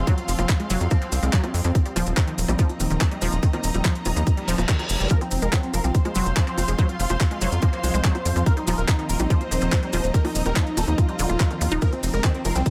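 A tight, tape-warm electronic kick sits up front, driving this psychedelic trance excerpt at 143 BPM in a straight 4/4, layered with a garage drum kit of crisp hi-hats, bongos, handclaps and ride cymbal, while grainy maracas sit close but in the background. Underneath, a punchy sawtooth-and-square sequencer bass with a filter pluck and saturated edge runs from Eb1 to F2, joined by a lush detuned unison pluck riff carrying sidechain pumping and delay. Softer background layers add tension: a very quiet swarming, warbling granular drone holds sustained chords, a rich, distant studio string section bows a vibrato-laden texture with its own pumping, and a very quiet metallic FM wobble bass surfaces briefly as a second line. A reverse cymbal sweeps in at 4.4 seconds, and at 5.1 seconds a thick, bold unison lead enters with phaser, delay and vibrato, carrying a bright wave-folded melody between C4 and C5. 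The harmony alternates between F5 and Eb5 chords, and a digital ambience wraps the whole psychedelic, driving groove.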